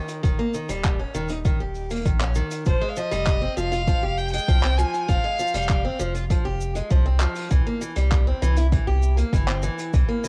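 A picked steel-string acoustic guitar opens this intimate, delicate folktronica excerpt in F minor at 99 BPM, its bright, boxy parlour tone and finger squeak coloured by cassette tape and tape echo, as a brushed jazz kit with handclaps, hi-hat and shaker joins alongside a deep electronic kick and a round, sine-like sub bass sitting up front. A clear, smooth violin with even vibrato carries the melody from 2.7 to 6.0 seconds, while the harmony moves from Eb to Fsus2 and lands on C7 at 7.5 seconds. The home cassette recording is dry, with little reverb.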